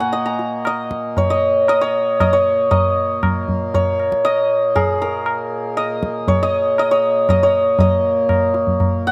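Hindustani classical music in raga Malkauns and a 5/4 metre, this introspective, longing fragment of a longer piece sets a bright, shimmering santur melody with slapback echo up front over a reedy, breathing hand-pumped harmonium drone and high-tuned, ringing tabla, all captured dry and close outdoors.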